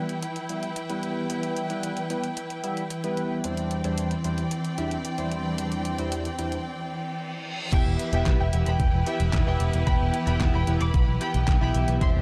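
A punchy, up-front picked electric bass with an envelope filter and tube saturation arrives at 7.7 seconds alongside a thumpy, overdriven electronic kick, driving this melodramatic, nostalgic italo disco passage in E minor at 112 BPM, cut from a longer piece. Before that, intense bowed strings hold sustained chords while a glossy, chorused polysynth plays stabs under a filter sweep, and a detuned, overdriven 8-bit drum machine supplies crash, handclaps, hi-hat and snare. After a break at 6.7 seconds and a brief reverse cymbal, a rich chamber violin section carries the melody with tape echo, all within a dark production with light digital reverb.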